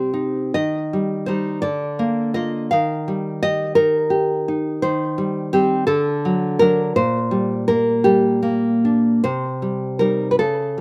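Intimate and wistful, this short excerpt from a longer romantic piece for solo classical guitar moves in a rubato 6/8 at roughly 48-57 BPM, settling into G minor from 4.8 s. The fingerpicked nylon-string guitar sits up front with a warm, acoustic tone, ranging from Bb2 to F5 as it passes through Cm, Eb and Bb/D before turning to D and Gm/Bb and resting on Cm7 at 9.2 s. The sound is dry and close, recorded outdoors with little reverb, and the tuning sits slightly below standard pitch.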